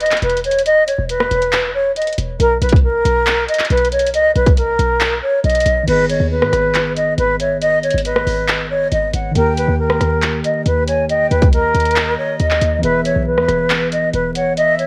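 Hip hop trap in a menacing, hard-hitting half-time feel, cut from a longer piece, where an up-front breathy concert flute with expressive vibrato and cassette-tape grit carries the melody over punchy, tight 808-style bass and an electronic trap kit of hard-clipped kick, metallic hi-hats, handclaps, rim clicks and crash; a mellow tine electric piano enters at 5.8 seconds and a soft-attack metal jazz flute joins in the background at 5.9 seconds, the mix sitting in a homemade cassette sound with vinyl crackle and a small-room reverb.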